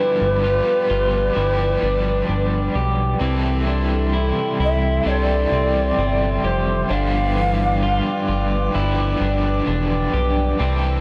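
At a slow, straight 65 BPM in 4/4, this blissful, dreamy dream pop excerpt in C major moves from G7 to C6 at 3.2 seconds and back to G7 at 6.9 seconds, as an airy, hollow shakuhachi with vibrato and analog delay carries the melody until 8.7 seconds over a bright, overdriven stack guitar with tremolo and subtle chorus, a warbling, nostalgic pad of detuned sustained chords with chorus and built-in reverb, slightly broken-up picked electric guitar arpeggios with subtle chorus and analog delay, and a fat, saturated sawtooth bass with a filter sweep that sits up front, all captured in a dry, gritty recording.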